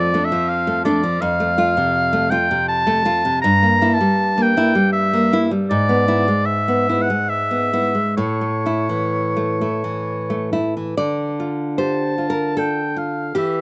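A clear oboe with light vibrato and a smooth top sings an elegiac, melancholic melody over bright fingerpicked nylon-string classical guitar from the first moment, both up front in this romantic duo cut from a longer piece, moving in a rubato 3/4 through dark harmonies that settle onto a D minor chord as a new section begins at 11.0 seconds, all captured outdoors with little reverb for an intimate, open-air sound.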